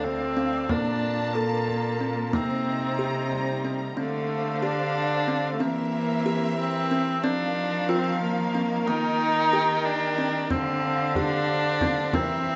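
A restless, pensive fragment of a longer contemporary chamber piece in 5/8 opens in a reverberant recital hall, with an up-front, rich bowed viola carrying a second line over a symphonic string section's smooth sustained chords, a woody, ringing kalimba plucking arpeggios, a nasal, intimate cello holding the bass with light vibrato, and a deep frame drum played with soft hands that drops out at 3.6 seconds and returns at 10.5 seconds.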